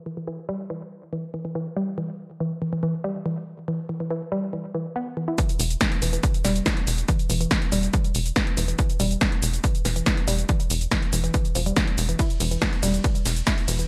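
Driving and relentless, this is a peak-time techno cut at 141 BPM in E minor, taken from a longer piece with a straight 4/4 pulse. A woody, wave-folded pluck opens alone from 0.1 seconds, carrying the riff in a dark, percussive voice with chorus, tube saturation, sidechain pumping and digital delay, while a filter sweep moves across the synth arpeggio sound over the first stretch. At 5.4 seconds the drop lands: an overdriven, layered electronic kick hits heavy and up front, joined by a techno kit of hi-hat, ride, shaker and a punchy snare, its hats, percussion, snare and cymbals low-pass filtered and touched with gated reverb and small room ambience. A tight sawtooth-and-square sequencer bass with ring modulation and a saturated yet mellow filter pluck enters on a low E, pumping with sidechain compression. The production is bright in a 1980s digital style with light reverb, keeping the pluck and drums forward and urgent.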